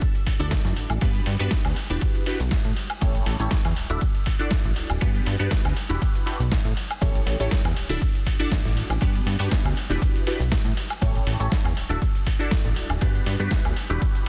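Filtered disco house at 120 BPM with a light swing, funky and groovy, this short excerpt cycles through Dadd9, Gmaj7, Em9 and A7 from the very start. An up-front, punchy electronic kick anchors a gritty, sampler-style soul kit of hi-hat, ride, shaker, snare and woodblock, its hats and cymbals pumping against the sidechain, while a plucky analog bass with tube saturation and a fast-attack, decaying filter pluck enters at 0.4 seconds. A detuned polysynth comp joins at the same moment, its sawtooth and pulse-wave chords carrying chorus, phaser, a moving notch and 12-bit sampler grit, all pressed into a dense, heavily limited mix with little reverb.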